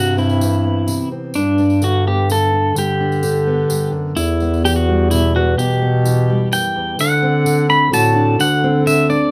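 This gentle, pastoral acoustic folk excerpt opens with pedal steel guitar, fingerpicked steel-string acoustic guitar and mellow bass clarinet sounding together from the start, in a straight 3/4 at 128 BPM in D mixolydian. Up front, the pedal steel carries the melody with a clean, twangy, compressed tone, played with fingerpicks and using slide and volume swells. Beneath it the acoustic guitar supplies a dark fingerpicked accompaniment, with an occasional finger squeak audible. The bass clarinet holds down the low line with a soft attack and smooth top, in a classical style and placed up front alongside the steel. A jingly tambourine, close and dry, enters at 0.1 seconds and sits quietly in the background, all within a light reverb. The harmony moves from Cmaj7 through G and Emadd9 before arriving on D7 at 7.0 seconds, where a new section begins.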